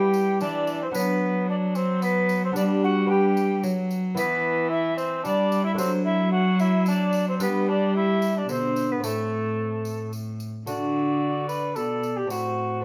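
A courtly yet rustic renaissance-style consort dance in 3/4 at 111 BPM opens with a pure, chiffy alto recorder carrying the melody over a dark, lightly vibrato cor anglais second line, a delicate fingerpicked lute with double gut strings, and a rich, reedy bowed cello holding the bass up front. A jingly, bright tambourine joins at 0.1 s, sitting close and dry beneath the ensemble, while the harmony moves from E minor through G, D and A minor before a new passage arrives at 10.7 s. The moderate stone-room reverb lends the ensemble a courtly space, and the piece is cut from a longer work.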